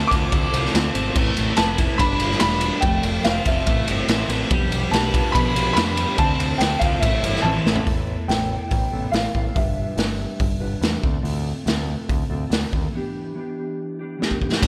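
A woody, boxy upright piano carries the melody with slapback echo over faint, shimmering sawtooth string-machine violins, a crunchy overdriven guitar riff with lush chorus, a clean, fingered electric guitar riff sitting in the background, and a growling overdriven bass, as a gritty, up-front garage drum kit with a punchy kick and dark cymbals drives this restless, cool indie rock excerpt in A minor at 143 BPM. The strings and crunchy guitar drop out at 7.9 seconds as the chords move from Dm7 and Amadd9 to Asus2, and the piano stops at 11.0 seconds. A break arrives at 12.9 seconds over Em7, all inside a lush hall reverb that gives a big arena sound.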